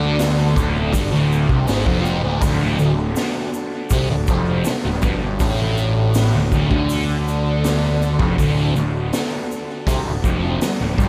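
A slow, straight 4/4 pulse at 81 BPM drives this trippy, hypnotic slice of psychedelic rock, cut from a longer piece and resting on a single D chord in D mixolydian. A raw garage drum kit enters at 0.2 seconds, up front with a punchy kick, a medium-tuned snare and hi-hat, its saturated, gritty sound set in a bright stone room with a rolled-off top and trailed by dub echo. Dominating the mix is a thick, double-tracked fuzz guitar playing a low riff between D2 and D3, its distortion colored by phaser and the same dub echo. Beneath it, a fuzz picked electric bass, overdriven and heard both direct and amped, holds the bottom from D1 to D2. In the background, a reedy vintage combo organ sustains clean chords with a subtle chorus, while a grainy tube shaker adds faint texture from 0.2 seconds, all within a small, echo-heavy room.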